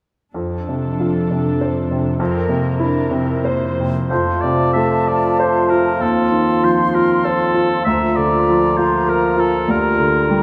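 Bathed in a wet concert-hall reverb, this lush, lyrical romantic movement for piano and orchestra in F major flows at 96 BPM in a rubato 3/4, with an up-front, clear grand piano carrying the melody throughout while veiled, con sordino viola and cello sections support it until 3.9 seconds, and then at 4.1 seconds an airy silver flute, a smooth, very quiet clarinet, a vintage-toned solo oboe and a distant bassoon enter alongside a dark, roomy French horn section holding sustained chords.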